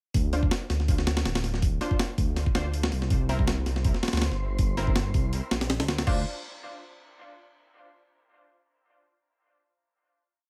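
A heavily chopped, pitched-up breakbeat drives this short, dark and nostalgic drum and bass piece at 162 BPM in D minor, its gritty, compressed kit pairing a thumpy kick and medium-tuned snare with hi-hat and crash, all sitting up front beside a deep, rumbling detuned saw bass that carries long gliding notes over Dm7 and C7. Sparse, bright orchestra-hit-like stabs in close voicing punch through with dub echo and their own reverb, while from 3.7 seconds an airy, breathy wind-like texture holds a high note in the background. The drop gives way at 6.1 seconds to a final Dm7 chord, and the overall room stays dry.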